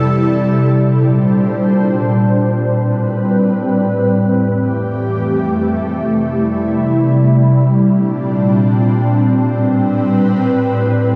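Floating in free time with an unmeasured pulse, this short hip hop cut from a longer piece feels spacious and ethereal. A single airy pad carries everything on its own from 0.0 to 11.2 seconds, sitting up front in the mix and spanning F2 to C5. Its tone blends detuned sawtooth, triangle and sine layers with a noise layer and a wave-folded edge, and slow attacks and long releases keep the sound mellow and sustained. Ensemble chorus, built-in reverb and dub echo wrap the pad in repeats, inside an echo-heavy mix with a moderate echo chamber reverb. The harmony drifts through C6, Bb69, Am9 and Fmaj9 before settling back onto Am9 at 9.2 seconds, returning to the opening mood.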